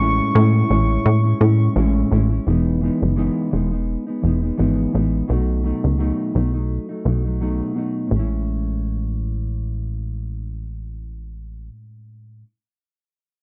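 A soft, round electric-piano-like synth melody, lush with chorus and tape echo, opens this laid-back, sunny bedroom-pop excerpt at 85 BPM in A lydian with a gentle 16th-note swing, joined from the start by a dark, clean, fingered electric guitar with subtle chorus and vibrato and a punchy, funky analog bass with a plucky filtered attack, the keys falling away at 1.7 seconds while bass and guitar carry the Amaj7, Emaj7 and B7 changes until 11.7 and 12.5 seconds in a dry, close 1970s-style studio sound with light reverb.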